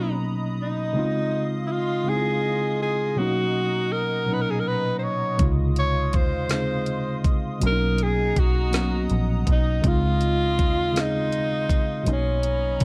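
Intimate and warm, this slow six-eight R&B excerpt at 54 BPM in Db major drifts between Cbmaj9 and Dbmaj9 as a breathy, whispered tenor saxophone with slapback echo carries the melody over a worn, slightly out-of-tune tine electric piano and a hollow, flute-like pad with chorus, until a round, foam-muted electric bass and a smooth drum kit with a knocking kick and woody snare enter at 5.4 s, set in a dark, dry production.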